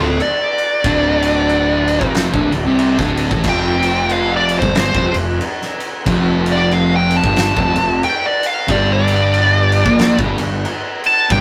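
A wah-treated fuzz lead guitar solos up front through this sludgy, hypnotic stoner and doom metal excerpt at 92 BPM with a swung feel, riding over a dark, double-tracked fuzz guitar riff, a growly overdriven fingered bass and an oversized low-tuned drum kit that enters at 0.2 seconds with a fat snare, punchy kick and dark crash and ride cymbals, all caught in a rough, tube-saturated rehearsal-room recording as the chords move from Dm to Fsus2 at 3.5 seconds and G5 at 8.7 seconds.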